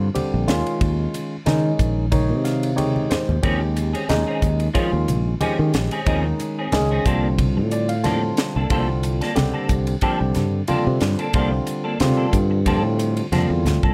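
Light reverb surrounds this short excerpt of electric jazz fusion, with a nocturnal yet driving mood at 91 BPM in 4/4 and a gentle swing on the sixteenths. A barky tine electric piano sits up front, bright and lightly overdriven through a combo amp with subtle chorus. It voices an Eb13sus4 that moves to C13sus4 at 7.1 seconds and adds brief fills, the first at 2.1 seconds. A warm fretless electric bass, direct and amped, shares the foreground, while a crisp, airy, polished fusion drum kit with a high-tuned snare, punchy kick, hi-hat and ride adds occasional fills. Thin-skinned, low-tuned congas, compressed and saturated, sit in the background, and a clean, picked, twangy electric guitar with ensemble chorus enters at 3.4 seconds with stabs.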